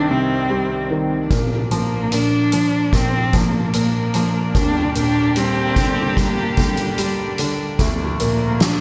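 Moderate studio reverb gives this short passage, cut from a longer piece, a roomy sound, with a bowed solo cello up front singing the melody in a nasal, focused, boxy tone with vibrato. It is a tender, hopeful pop ballad at 74 BPM in Bb major. A clear, natural grand piano with short sustain plays the accompaniment, while a studio string section holds sustained chords in a reedy, gut-string period style with light vibrato. A soft-mallet acoustic drum kit with a fat snare, boomy kick and hi-hat enters at 1.3 s as the chords move from Cm through Bb and Ebmaj7 to Bb/D.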